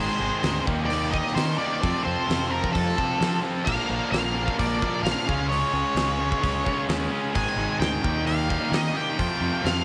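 An octave-fuzz lead guitar carries the melody, its dark, fuzzy distorted tone trailed by tape echo as it rides over a confident, driving classic rock groove in straight 4/4. Beneath it, a tight distorted guitar plays a bright, picked riff that sits forward, while a compressed overdriven electric guitar adds a warm riff in the background and a double-tracked, crunchy overdriven guitar sits very quietly underneath. A growling fingered electric bass, bright and overdriven, anchors the low end throughout. At 0.4 seconds a huge arena drum kit enters with a fat snare, punchy kick, hi-hat and crash cymbal, sounding big and roomy. The chords move through Ab, Eb, F, Bb and Db in this short cut from a longer piece, with light reverb and studio ambience around the parts.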